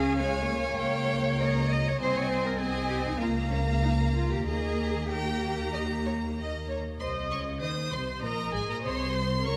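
A quick, cheerful classical-period movement for string orchestra in Ab major, moving at 97 BPM in 4/4 with a rubato feel and tuned slightly below modern pitch. Two rich, focused violin sections carry the melody and a second line above a smooth, distant viola accompaniment, while a warm cello section with soft attacks and expressive portamento and a dark, close double bass section underpin the harmony. All five sections play with vibrato throughout this brief excerpt, bathed in the lush reverb of a scoring stage, and the music moves into a new section at 7.0 seconds.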